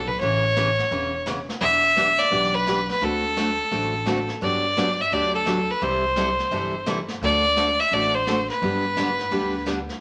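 Cheerful and playful, this short slice of a longer western swing tune rolls along in a lilting swung 4/4. Up front, a single bowed fiddle carries the melody with a clear, intense tone, a light vibrato and an airy bow, though its sound is a touch boxy. A picked steel-string dreadnought guitar fills in the accompaniment with a bright, full-bodied ring from fresh strings, while a pizzicato upright bass with gut strings gives a woody, thumpy foundation. In the background, a vintage brush drum kit sits in a small, pumping room, with a medium-tuned snare, a punchy kick and hi-hat behind a rolled-off top end. The harmony moves from Aadd9 through Em7, D7, Gmaj7 and C6 before settling on G at 8.6 seconds, and a wet studio reverb gives the whole recording an easy, roomy glow.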